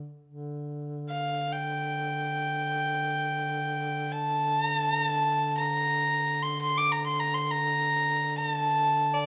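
A dark duduk drone opens this solemn fragment of a Caucasian folk lament, its low held note shaded with vibrato and scooped pitches. At 1.1 seconds a single bowed fiddle takes up the mournful melody up front, its nasal, gut-string tone high above the drone. The two play live together in one large studio room, and moderate reverb gives the sound a spacious, grave air.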